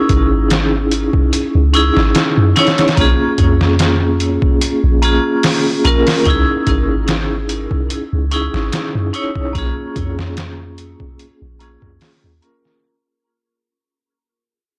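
A ringing, metallic vibraphone struck with hard mallets accompanies this cinematic, hypnotic trip hop excerpt at 73 BPM, its fast motor vibrato shaded by tremolo, tape echo and a band-limited vintage tone as it moves between C#madd9 and A#m7. Beneath it sit a deep, round 808-style bass with tube saturation and a gritty, pitched-down sampler kit with a thumpy kick and medium-tuned snare, all under light reverb in a blown-out, overdriven recording. From 6.3 seconds a filter sweep works over the vibraphone while the track fades out.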